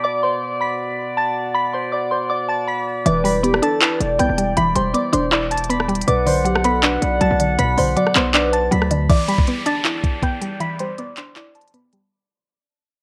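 Trap hip hop with a menacing, melancholic half-time feel, cut from a longer piece, in which a soft FM synth bell melody treated with chorus and phaser floats over dark, vintage brass ensemble chords, joined at 3.1 seconds by a hollow clarinet-like synth lead, a woody mallet-like synth pluck, a punchy 808-style bass and an up-front trap kit with knocking kick, crisp hats, handclaps, rim clicks and crash, before a downlifter and filter sweep carry the fade-out from 9.1 seconds, the whole mix sitting in light reverb with a worn, warbling cassette-tape pitch drift.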